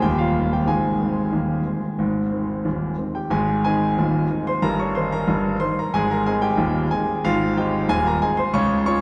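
Playful and lively, this short ragtime piano excerpt moves at 92 BPM in a straight 2/4 feel, set in A-flat major. A single concert grand carries the whole performance from start to finish, its tone clear and natural with a deep bass, sitting up front in the sound. The playing spans a broad range, reaching from the lowest Eb up to a high Db, and the harmony centers on Eb and Ab chords, with an Eb over G appearing at 4.6 seconds. The recording is drenched in a long cathedral-like reverb, giving the piano a resonant, churchy halo as it shifts from its opening section into a new passage at 3.3 seconds. Cut from a longer piece, the fragment closes at 9.0 seconds.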